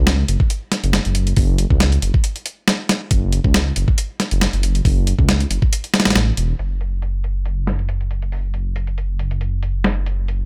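A swung breakbeat groove drives this energetic, gritty excerpt at 138 BPM in 4/4, built in F# minor pentatonic from a dusty, sampler-style soul drum kit with a thumpy kick, medium-tuned snare and filtered hi-hats, all compressed and set up front in a small room. Beneath it, a dark, detuned sawtooth bass rumbles deep and sustained from E1 to C#2, its beating tone giving the low end a restless weight under a digital ambience. The kick drops out from 5.7 to 6.6 seconds, just before the music moves into a second section that runs to the end.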